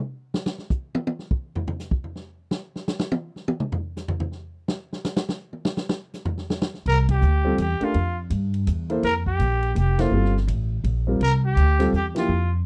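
A vintage drum kit opens this hypnotic, spiritual modal jazz excerpt in a swinging 3/4 with a solo passage of punchy kick, medium-tuned snare, toms and dark, rolled-off cymbals, heard up front in a dry, close 1970s-style studio sound. At 6.9 seconds a raspy, growling trumpet enters with scooped notes, light vibrato and a slapback echo, sounding distant and roomy, while a woody pizzicato upright bass anchors a sustained suspended chord and a natural grand piano joins just after. The band hits shared accents at 7.0, 9.9 and 12.1 seconds before the cut ends.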